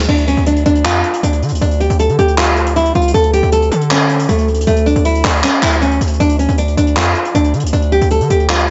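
The recording has a studio ambience with nothing above 7.9 kHz, and this short cut comes from a longer trap piece. It sits at 157 BPM in 4/4 with a half-time feel, in D harmonic minor, and the mood is melancholic yet hard-hitting. A distorted 808-style bass opens at 0.0 seconds, heavy and saturated, its sine tone carrying a noise layer with a fast attack and a decaying tail, placed up front between C#2 and D3. From 0.1 seconds a fingerpicked nylon-string guitar carries the classical-flavored melody between A3 and A4, warm and up front, with audible finger squeak and a digital delay trailing its notes. Beneath them, a soft brush drum kit recorded in a small room adds smooth handclaps, hi-hat and crash cymbal at a lower level, its sound dark with a rolled-off top. The harmony moves from Dm to D5 and back to Dm, and all three parts continue to the end at 8.7 seconds.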